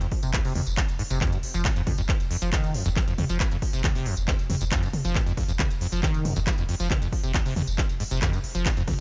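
Driving peak-time techno at 137 BPM in F minor, this brief cut from a longer piece feels industrial and relentless from its first beat. A squelchy, resonant sawtooth acid bass sits up front playing a riff between Eb2 and F3, its filter sweeping over fast-attack, decaying notes, colored by analog chorus, cassette tape character and tape echo, and pumping against the sidechain. Beneath it, a deep, round sine sub bass holds F1 in the background, softened by a low-pass filter and thickened with tube saturation as it pumps too. The electronic kit brings smooth hats, handclaps, tambourine and toms, with its hats, cymbals, percussion and toms all ducking to the sidechain, while a punchy, layered electronic kick drum enters at 0.1 seconds and drives the straight 4/4. The sound is dry and gritty, a hardware recording in a digital ambience with the top end capped at 7.7 kHz across the whole nine seconds.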